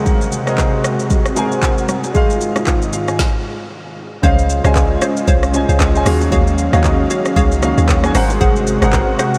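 Amapiano with a deep, late-night mood and a swung sixteenth-note feel, where a smooth vintage grand piano with analog chorus plays accompaniment and a mellow detuned sawtooth pad with chorus and phaser holds sustained chords over a produced drum kit with a woody snare and metallic hats plus very quiet acoustic congas and bongos, until a stop at 3.2 seconds gives way at 4.2 seconds to a drop that brings in a round, dark log drum bass and hollow, bouncy square plucks with chorus and delay sitting in the background, all in a dreamy mix soaked in a huge ambient reverb.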